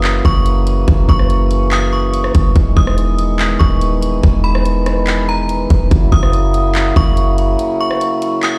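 A metallic, ringing FM bell melody with chorus and digital delay leads this dreamy, blissful cloud-rap excerpt at 143 BPM in a half-time feel. It plays over mellow, soft-attack French horn section chords that pump with the sidechain, and a trap kit of hard-clipped kick, bright hi-hats, handclaps and rim clicks. A deep, boomy 808-style bass sits up front until 7.6 s, where a short break runs to the cut at 8.6 s, and the whole recording sounds as if played on a big system in a bare stone room, with a faint mains hum underneath.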